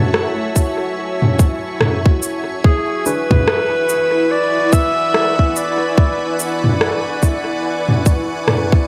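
Ambient dub at 72 BPM with a swung sixteenth feel, spacious and deep under a huge ambient reverb: a calm, organ-like pad holds sustained F#m7 and E7 chords through ensemble chorus, a bubbling, resonant stepped-filter texture sits in the background, an overdriven electronic kit of rim click, shaker and toms with dub echo runs up front beside a tight, overdriven kick entering at 0.6 s, a smooth classical-style clarinet solo carries the melody with dub echo from 2.6 to 6.4 s, and a very quiet, muted, dark dub chord stab with phaser flickers once at 3.1 s, all over a faint mains hum in this short cut from a longer piece.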